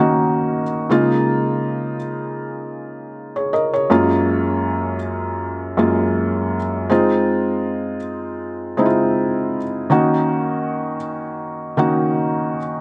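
Lightly reverberant and soft at the top, this tender, smooth R&B fragment, cut from a longer piece, features a felt-muted upright piano playing solo, intimate and up front with its action noise clearly audible, drifting over gently swung sixteenths through Ebm7, Db6, Gbmaj7 and Fm7 before settling back on Ebm7 at 9.9 seconds.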